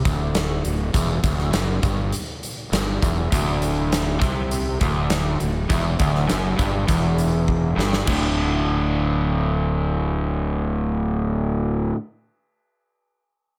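Swaggering and driving, this 12-second classic rock excerpt in D mixolydian moves at a straight 101 BPM, with an overdriven semi-hollow guitar riffing in the background over an up-front fuzz-toned fingered bass and a huge arena drum kit of punchy kick, medium-tuned snare and bright cymbals in a pumping hall, joined at 3.3 seconds by a crunchy overdriven guitar riff, until a drum fill at 7.5 seconds leads from Cadd9 to a D5 section where the drums drop out at 8.2 seconds, all under light reverb.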